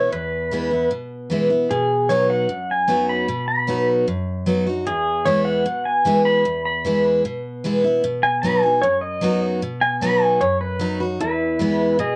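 From the first moment, a picked steel-string acoustic guitar and an electric pedal steel guitar sound together in an easygoing, down-home country groove in straight 4/4. The dreadnought acoustic gives a bright, full-bodied accompaniment, moving between E and B chords from its low register up to the middle. Up front with it, the pedal steel takes a solo from 0.0 to 11.2 seconds. It is twangy, clean and compressed, played with fingerpicks and slide, and it uses volume swells. The close, dry 1970s-style studio sound carries light reverb, and the instruments are tuned slightly below standard pitch, to A4 = 435 Hz. This short cut from a longer piece lasts 12.2 seconds and closes on an E chord.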